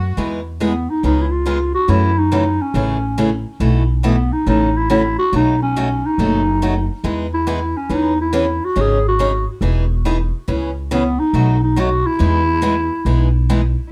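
A swung 4/4 pulse at 140 BPM, with the eighths swung at 63%, drives this lively excerpt of acoustic string swing in the jazz manouche style, set in E major and cut from a longer piece. The upright bass opens at 0.0 s, its pizzicato gut strings woody, thumpy and dark, sitting up front. The picked steel-string acoustic guitar joins at 0.2 s as accompaniment, sounding bright with fresh strings and audible finger squeak. A growling clarinet carries the melody from 0.6 s, mellow yet raspy and gritty, with light vibrato in a soloing jazz style. The harmony moves through colourful changes such as Emaj7, C#7, F#m7, B7sus4 and G#7sus4 before settling back on Emaj7. Light reverb frames a dusky, warm production where all three instruments sit close to the listener.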